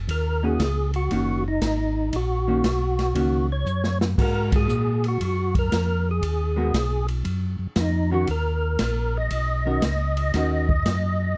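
A swung 4/4 groove at 117 BPM drives this bluesy, soulful soul jazz organ trio excerpt in Eb minor, moving from Ebm7 to Abm9 and back, with an open acoustic drum kit of dark cymbals, medium-tuned snare and boomy kick that plays a fill from 3.7 to 4.2 seconds before a band accent at 4.4. A round, mellow tonewheel organ carries the bass line through a slow rotary speaker, while a fat, lightly overdriven percussive tonewheel organ with third-harmonic percussion, chorus vibrato and key click takes the melody. A dark, clean, picked hollow-body electric guitar adds accompaniment, all captured with close, detailed microphones and little reverb.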